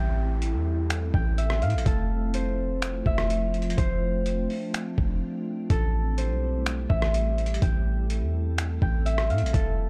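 Spacious and melancholic, this atmospheric cloud-rap piece in A minor moves at 125 BPM with a half-time feel: a ringing, fingerpicked Celtic harp melody with tape echo floats over a glassy, ethereal FM pad that holds Am7 and Fmaj7 through ensemble chorus, phaser and sidechain pumping, while a deep, boomy 808-style sine bass sits up front, a gritty, pitched-down trip hop sampler kit of thumpy kick, finger snaps, hi-hat and rim click enters at 0.4 s ahead of a brief break at 5.2 s, and a background electronic downlifter is gone by 1.9 s, all within a digital ambience.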